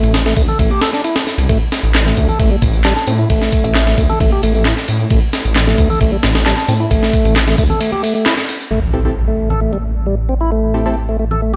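Energetic and funky, this breakbeat excerpt rides on a gritty, pitched-up sampled drum kit with a thumpy kick and high-tuned snare, placed up front and set in a large room. Beneath it, a thick, menacing detuned saw bass pushes dark, saturated tones, while a fat tonewheel organ plays the riff through a slow rotary speaker, a low-pass filter and dub echo. Layered electronic tambourine and handclaps with a tape-warm, filtered tone sit alongside bright congas struck with hard hands in the background. At 2.8 seconds a glassy, crystalline synth bell drifts in behind the groove, warbling with chorus, telephone coloring, vintage 12-bit grit and dub echo. After a break and a band accent, the drums drop out at 8.7 seconds as an electronic impact hits, a filter sweeps over the organ, and a nasal, band-passed chord stab with chorus and dub echo joins in for the closing bars.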